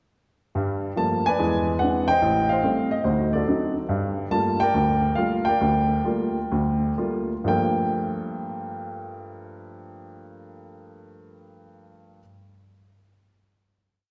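Solo jazz with a swinging, late-night mood, this short complete piece features a woody, natural-sounding upright piano placed up front, playing a motif-based, song-like melody over a stride bass and close voicings, slowing down from 3.9 seconds before settling on a final chord at 7.5 seconds that rings into a wet concert-hall reverb.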